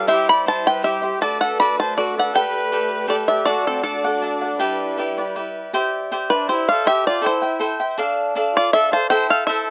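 A bright, twangy banjo picked with fingerpicks leads the melody up front in this festive, proud mariachi-style Mexican folk excerpt at 160 BPM in a lightly swung 3/4, joined by a clear, classical-style trumpet on a second line and a crisp, picked cavaquinho accompaniment, all three carrying a slapback echo, while a distant, woody violin section holds lush, dark sustained chords with vibrato until 5.7 seconds, when the music shifts from G major to C major, in a dry outdoor sound.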